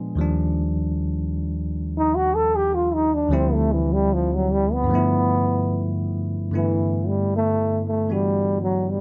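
Tender, intimate jazz at 76 BPM with a gentle swing, taken from a longer piece: a bell-like, clean tine electric piano comps through rich Ebmaj9, Dm11 and G13 chords before settling on G69 at 6.5 s, while a mellow, breathy trombone with a soft, whispered attack enters at 2.0 s for an up-front solo, all captured dry and detailed by close microphones.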